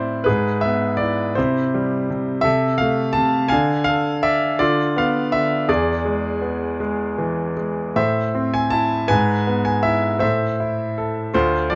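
The rhythm sways in a lilting six-eight, stretched and pulled by a free rubato that lets each phrase breathe at a slow, unhurried pace. This is a lyrical classical piece for solo grand piano, dark and wistful in mood, cut from a longer work and lasting about 11.8 seconds. The piano spans from D2 up to A5, and its tone is bright and brilliant, with long sustain that lets notes ring and hang in the air. Close, detailed microphones place the instrument up front and intimate, so the clatter of the action is audible beneath the polished sound, while a light reverb adds a touch of space. The harmony drifts from E/G# through C, C6 and Dm to a diminished chord over D, settling on E at 5.7 seconds before resolving to Am at 8.0 seconds. It closes by turning back through E/G# to a final Am at 10.2 seconds.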